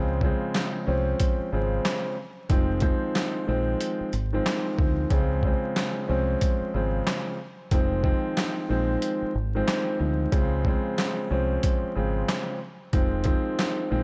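Gritty, tough boom-bap hip-hop at 92 BPM with a 16th-note swing, this short cut from a longer piece sets a mellow, vintage baby grand piano, filtered and up front with long sustain, alternating Dbmaj7 and Fm7 over a round, deep fingered electric bass and a compressed, up-front sampler-style kit of thumpy kick, medium-tuned snare, handclaps and hi-hat re-recorded in a large room, all wrapped in light reverb and vinyl crackle.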